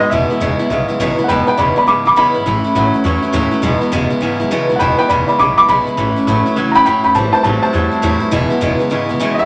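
Rowdy and rollicking, this rockabilly excerpt swings at 205 BPM in E major, moving between E, A and a brief Am7. An up-front, slightly detuned upright piano with audible action noise carries the melody and takes a solo from 1.3 s. Beneath it sit a full-bodied picked dreadnought acoustic guitar, a twangy, slightly broken-up electric guitar riff through a small old amp, and a woody, thumpy pizzicato upright bass with gut strings, all in a moderate studio ambience.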